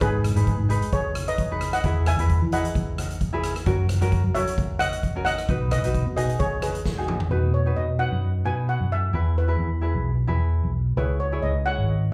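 A shimmering double-seconds steel pan carries the melody up front in this festive, carefree calypso, its metallic tone struck with medium rubber sticks and trailed by slapback echo and delay. Beneath it, a fingered electric bass sits just as far forward with a bright, growly, amped sound, while a tenor ukulele adds mellow, fingerpicked acoustic accompaniment touched with its own slapback echo. A polished street-band drum kit drives the 132 BPM groove in B major with a light swing on the 16ths, using hi-hat, rim click, a medium-tuned snare, toms and a boomy kick in an airy, big-room sound. The drums close their part with a fill at 6.9 seconds and drop out at 7.3 seconds, leaving pan, ukulele and bass to carry the second section over chords moving from B to E and C#m. The whole cut has the feel of a live gig heard through a club PA, wrapped in small-room ambience and club reverb, and it is taken from a longer piece.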